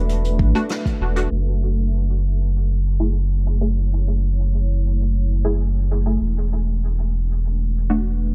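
A straight 4/4 pulse opens this brief ambient dub fragment, cut from a longer piece, and sets a deep, meditative mood. Brushed hi-hat and rim clicks from a jazz kit, trailed by dub echo, join a layered electronic kick and a short band accent in the opening moments, and both drum parts fall silent by 1.3 seconds. Underneath, a round, sine-based sub bass sits up front throughout, while a moody, detuned sawtooth pad holds slow-attack chords with chorus and reverb, a filter sweep moving across it from 1.3 seconds onward. Muted, plucky chord stabs built from sawtooth and pulse waves flicker through phaser, ensemble chorus and dub echo. The harmony moves from E9sus4 to F#m7 and returns to E9sus4 near 6.2 seconds, in a small room with a dark, low-pass filtered production.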